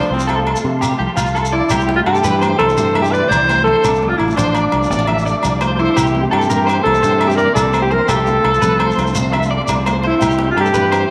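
A breathy alto saxophone sits up front, carrying the melody in a roomy, jazz-style voice with vibrato and scooped notes in this carefree, joyful highlife guitar band passage in C major, moving at 113 BPM in a straight 12/8. A raspy, gritty tenor saxophone is heard only very faintly in the opening half second, and a short fill at 1.2 s leads into the main section at 1.7 s. Beneath the horn, a twangy, slightly broken-up electric guitar picks arpeggios through tremolo and slapback echo, while a full-bodied nylon-string guitar is fingerpicked in the background and a soft, flute-like tonewheel organ holds sustained chords with key click, chorus vibrato and a fast rotary speaker. A dark, round and punchy fingered electric bass anchors the harmony as it moves through C, Dm and C7 before settling on F over C and C again. Ringing agogo bells, a grainy shekere and distant, hard-handed congas fill out the percussion, all set in a moderate echo-chamber reverb.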